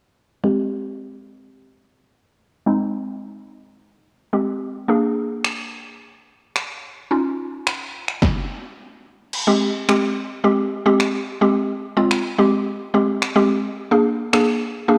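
A woody, round, mallet-like synth pluck carries this summery, carefree dance-pop cut from a longer piece, sitting up front with a fast attack, a decaying tail and a noise layer in its vintage FM tone. Its chorus, sidechain pumping and low-pass filter give it a mellow, breathing character, and a filter sweep runs across it from the opening through 9.3 seconds. Moving at 108 BPM in a straight 4/4 in Ab major, the chords shift between Abmaj7, Bb7 and Dbadd9. At 5.4 seconds an electronic, layered deep house drum kit arrives up front, its deep kick and punchy snare overdriven, with finger snaps and a crash cymbal adding sparkle. From 9.3 seconds a second section returns to Abmaj7 before moving to Bb7. The whole mix sits in a lush hall reverb and carries the worn, warbling pitch drift of old cassette tape, with a hint of small room ambience.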